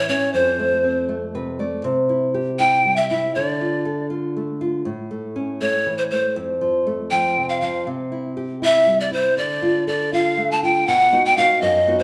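A large studio reverb gives this wistful, earthy Andean folk piece a wet, roomy sound, as the players perform live together in one space. It moves at 80 beats per minute in a straight 6/8, in D dorian with the tuning set to A4 = 438 Hz. Up front, a bamboo pan flute carries the melody between C5 and A5 with a breathy, tongued tone, an audible chiff on its notes and touches of vibrato. Sharing the foreground, a classical nylon-string guitar is fingerpicked across a span from F2 to D5 with a warm acoustic voice, adding a short fill from 1.1 to 1.8 seconds. The harmony cycles through F, C, Dm and A before repeating, and a new section arrives at 10.9 seconds on a B chord just before this cut from a longer piece ends at 12 seconds.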